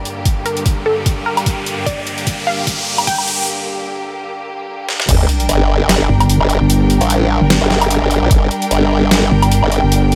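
Heavy wobble dubstep in G minor at 149 BPM with a half-time swing, this menacing, aggressive cut opens with a lush, detuned unison pluck melody drenched in tape echo and filter-swept over rich, vibrato-laden studio strings that pump under sidechain, while a riser and sub drop, a knocking overdriven electronic kick and an up-front dubstep kit with deep snare, bright hats, crash and woodblock build through drum fills to a break, before the drop at 5.1 seconds unleashes a saturated formant-sweep wobble bass followed at 6.1 seconds by a dark, detuned pulsing pluck wobble bass, both chorused and overdriven, all set in light digital ambience.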